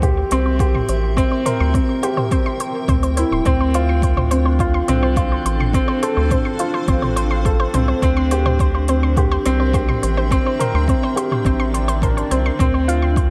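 Moving and intimate, this 105 BPM piano and strings electronica excerpt sets a worn, woody, slightly detuned upright piano riff up front with delay over a round, dark analog bass and a deep electronic kick. Smooth hi-hats and toms from a deep house kit play along, while a nasal, bright analog pluck playing arpeggios through chorus and delay and a blurred, evolving granular cloud pad of sustained chords share sidechain pumping with the bass as the harmony moves between C7 and Dm7, before a very quiet electronic swell enters at 11.7 s, all in light reverb.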